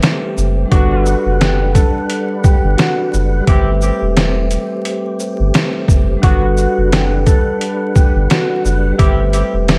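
This soulful boom-bap hip-hop piece at 87 BPM in G major opens on gritty, pitched-down sampler drums with a thumpy kick and a medium-tuned snare, alongside a mellow soft-mallet vibraphone and a lightly overdriven tonewheel organ turning through a slow rotary speaker. A deep, round dub sub bass enters at 0.4 seconds, and at 0.7 seconds a dark, clean fingered electric guitar takes the melody through analog chorus while a tight horn section with octave doubling adds delayed stabs. The harmony moves between Am7 and Gmaj7 over a swung sixteenth-note feel, with light reverb and a layer of vinyl crackle.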